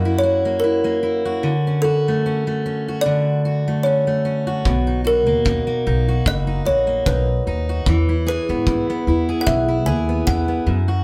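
A sunny, easy-going acoustic pop excerpt opens with a kalimba carrying the melody over fingerpicked steel-string acoustic guitar, both heard from the very start. The kalimba has a bright, ringing, hollow-box tone plucked with the thumbnail, while the jumbo guitar sounds full-bodied and up front with fresh strings. At 4.7 seconds a pizzicato upright bass and a punchy, natural kick drum join, the bass woody and thumpy on steel strings and sitting forward in the mix. The tempo is a relaxed 75 BPM in 4/4 with a light swing on the sixteenths, moving through F#7, Dmaj7, Bmaj7 and E. The band plays live together in one room, wrapped in a moderate studio reverb, and the passage is cut from a longer piece.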